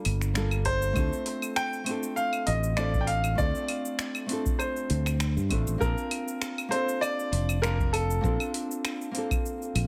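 A clear, polished baby grand piano carries the melody in this smooth, sunny sunset chillout piece, entering at 0.7 s and finishing at 8.5 s with a digital delay on its notes. Beneath it, a bright, growly fingered electric bass sits punchy and up front, the most prominent part in the mix. A dark, full-bodied nylon-string guitar provides fingerpicked, classical-style accompaniment through its own delay. The smooth R&B kit supplies claves, finger snaps, metallic hi-hat and shaker with a tape-warm, produced sheen, and a deep analog electronic kick joins at 0.7 s over a gently swung 16th-note feel. The harmony moves from Gm9 to Dm7 and then Bbmaj7 inside a light reverb and digital ambience, and the passage is cut from a longer piece.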